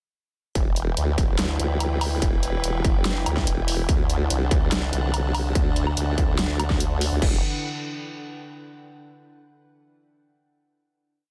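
Heavy wobble dubstep in a half-time feel, this short, aggressive piece launches straight into a drop at 0.6 seconds and moves from E minor to D before settling back on E minor for a final chord at 7.2 seconds. Up front, a formant-sweep wobble bass blends sawtooth and sine tones through a formant filter, with fast attack, chorus and overdrive, playing modulated phrases whose wobble speed keeps changing. Alongside it, a distorted, tape-warm electronic kick thumps out the half-time pulse, joined by a layered drum kit with a huge snare, bright closed and open hats, a low woodblock and crashes, all set in studio reverb. An evolving wavetable pad of bright, detuned, morphing triangle tones holds sustained chords with a slow attack and long release, its chorus and built-in reverb pumping against the sidechain. The dense, heavily limited modern master sits in a digital ambience that keeps the whole drop crushing and relentless.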